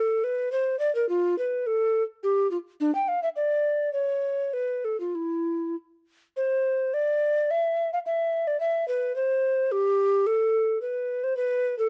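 A mellow, hollow tenor recorder plays alone and up front throughout this short passage from a longer baroque-style fantasia in A minor, its grave, flowing line moving in a rubato 3/4 at roughly 95-111 BPM between D4 and G5. Close, detailed microphones catch the woody, airy tone, the tongued chiff at the start of notes and a touch of vibrato. A light reverb surrounds the instrument, and the music shifts into a new section at 6.4 seconds before the passage ends at 11.9 seconds.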